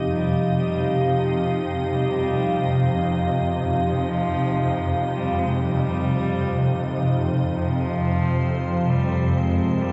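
A swarming, tense drone sits up front in this dark ambient fragment, its detuned sine and sawtooth layers roughened by ring modulation and granular grit as it holds the low register from F2 to C3 under a sheen of built-in reverb. Around it, a deep, moody analog pad sustains chords from square and sawtooth waves with a sub octave, given motion by chorus and phaser. Higher up, a quieter icy glass pad adds a crystalline, airy shimmer, its detuned sine voices and noise layer softened by chorus and its own reverb. A single period-style cello fades in across the whole clip, playing a nasal, reedy melody between F3 and Ab3 with an airy bow and gut-string tone, trailed by a diffuse ambient delay. At a slow 64 BPM in 4/4, the harmony rests on Fsus2 before shifting to C7(no3)/F at 7.5 seconds. The whole fragment feels unsettling, bathed in a huge, wet reverb with a muted, shadowy top end.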